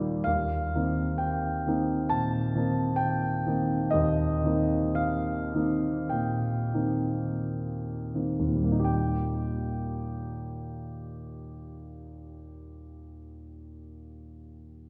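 A lone concert grand piano opens on an Eb6 chord in this hazy, serene impressionist classical passage in Eb major, its clear, open tone placed up front with a deep bass reaching from Eb2 to A5. Played in 4/4 with free rubato between 37 and 68 BPM, the opening phrase slows down until 8.9 seconds, where a second section settles onto an Eb chord. A wet church reverb with a 2.7-second decay surrounds the piano, and the passage is cut from a longer piece, ending at 14.9 seconds.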